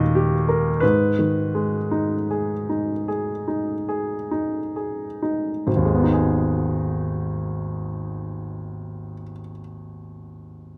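Set in a moderate studio reverb, a warm, natural-toned baby grand piano sits up front in this short cut from a romantic nocturne in 6/8, its yearning, wistful solo line moving with free rubato, slowing through its opening phrase before a new section begins at 5.7 seconds.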